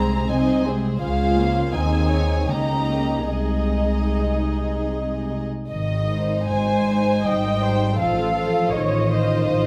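A serene, slow romantic movement for string orchestra opens with all five sections together in Ab major, in a rubato 3/4 at 72-85 BPM: a dark, intimate violin section carries the melody over a warmer second violin line, while lush, woody violas fill the middle. Cellos with a soft attack and a pure, floating double bass section placed up front anchor the bass, and every part is bowed sul tasto. Close, detailed microphones and light reverb capture this brief passage from a longer piece, its harmony moving from Ab/C through Dbmaj7 to F7/A at 8.0 seconds.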